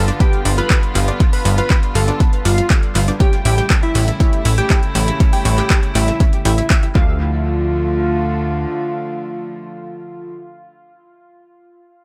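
Melodic techno at 120 BPM in D dorian, driving and dark, built on an overdriven electronic kick up front with an overdriven deep house kit of handclaps and metallic hats plus a very quiet, gritty sampler-style kit of hi-hat and snare, all under a punchy, funky analog bass with sidechain pumping. A thick, detuned unison lead carries the melody with subtle chorus and tape echo, while a crystalline wavetable pluck plays a second line above it, a round analog pluck arpeggiates in the background through dub echo, and a reedy chamber string section sustains chords over G7 and A7. The drums drop out by 7.1 seconds as the harmony settles on Dm, leaving a dry, echo-heavy mix of lead, strings, plucks and bass to carry this excerpt from a longer piece.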